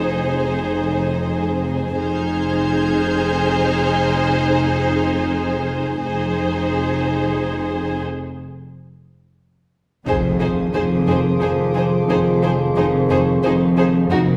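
Ominous and mysterious, this cinematic orchestral passage in F minor moves at 89 BPM in 3/4, with a rich violin melody over warm second violins, a distant viola, and cello and double bass holding the bass, while dark high violins with portamento drift in the background from 2.0 seconds, and after a break at 8.0 seconds an electronic impact at 10.1 seconds brings in tight, dark French horns, soft-attack trombones and a very quiet lush cello riff, all set in the reverberant bloom of a concert hall.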